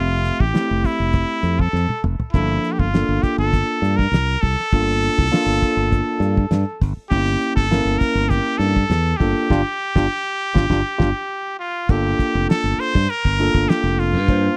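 A dry, close 1970s-style studio sound with small room ambience frames this intense, slick electric jazz fusion excerpt in G dorian at 100 BPM, where a nasal, straight-muted trumpet carries the melody up front over a barky, lightly overdriven tine electric piano heard through a combo amp, a bright, growly fingered electric bass and a damped 70s drum kit with a fat snare, tight kick and rolled-off top, while a drum fill comes early, a band accent arrives at 9.5 s, and an electric piano fill at 10.7 s leads into the closing section at 11.9 s.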